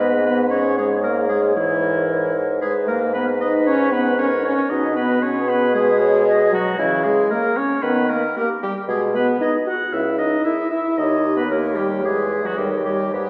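A straight 4/4 pulse at 114 BPM drives this urgent, restless classical-period movement for wind quintet in G# minor, cut from a longer piece. The airy, mellow flute carries the melody from the background while a clear oboe with light vibrato sings a second line; the up-front French horn with its vintage glow and a very quiet clarinet fill in the accompaniment, and a roomy bassoon anchors the bass. The harmony moves from G# minor through C# minor colours toward D#7 tension, and the quintet sits in the wet reverb of a church or concert hall.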